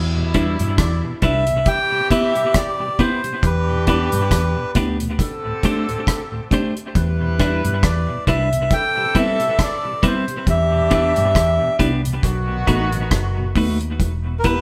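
Roots reggae in E minor at 68 BPM, this serious, laid-back passage is cut from a longer piece, with a swung sixteenth feel and chords moving from Em7 through Cmaj7, D7sus4 and B7 before settling on Em. A reedy, breathy melodica carries the tune up front from 0.8 s, over a dry drum kit with a tight kick, hi-hat and rim click, a dark, round, foam-muted fingered bass, and a clean, picked electric guitar with dub echo. In the background a soft, flute-like tonewheel organ with chorus vibrato and a slow rotary speaker fills out the harmony, while a distant horn section with light vibrato plays a second line until 13.5 s, the band heard playing live together in one room with moderate stone reverb.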